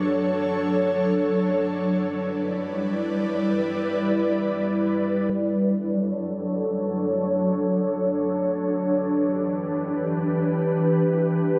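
Bathed in a lush hall reverb, this dreamy, blissful hip hop excerpt in free time and D major features a single airy, detuned pad with a mellow, chorused shimmer and slow-blooming attack, sustaining Dmaj7 and G6 chords up front while a filter sweep moves across it from 5.3 seconds to the close at 11.6 seconds.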